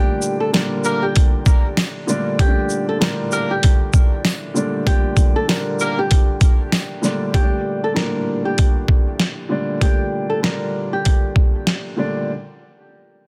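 A swung boom-bap groove at 97 BPM drives this gritty, dark hip-hop piece in G minor, with compressed, pitched-down sampler drums up front: a thumpy kick, medium-tuned snare, hi-hat and shaker, plus a jingly tambourine in the background from 0.5 to 6.9 seconds. A dark concert grand with audible action noise and deep bass lays a mellow, cassette-tinged accompaniment on a Gmadd9 chord beneath a fingerpicked flamenco guitar melody treated with tape echo. A tight horn section with vibrato and octave doubling adds smooth stabs from 0.8 to 6.0 seconds, all set in a dense, heavily limited mix with studio reverb.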